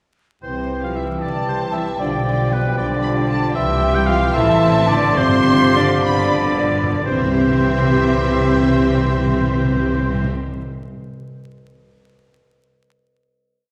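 A graceful, lively classical-period movement for symphony orchestra in C major and a rubato 6/8, opening at 0.4 s with a clear oboe, a mellow, hollow flute, a warm clarinet, a dark bassoon and a French horn section doubling the tune at the octave, over lush, vibrato-rich strings where violins carry a counter-melody and then the main melody from 1.2 s, violas add very quiet syncopated chords, cellos double the tune at the octave and double basses play bass on the beats, before the pace slows from 2.8 s, timpani enter at 5.2 s with single strokes and a fill leading into the final chord at 7.1 s, all heard from further back in a wet concert hall with vinyl crackle.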